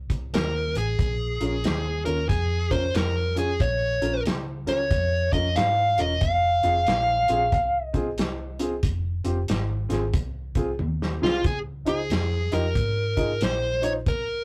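A rough rehearsal-room recording with tube saturation and a moderate booth ambience gives this excerpt from a longer piece a close, gritty character. It is a soulful, smoky electric blues shuffle in F minor at 92 BPM in 4/4, swung on the eighths, moving through Fm, Bbm and back to Fm before landing on Db at 11.4 seconds. A dark, smooth lead guitar with overdrive sits up front, carrying the melody from F4 to F5, while an acoustic soul drum kit with a punchy kick, medium-tuned snare and rolled-off top drives the groove and plays a fill from 10.8 to 11.4 seconds. Underneath, a vintage muted fingered electric bass gives a round, amped low end between E1 and Ab2. An upright piano enters at 1.4 seconds with woody, boxy accompaniment, long sustain and audible action noise that adds an intimate feel.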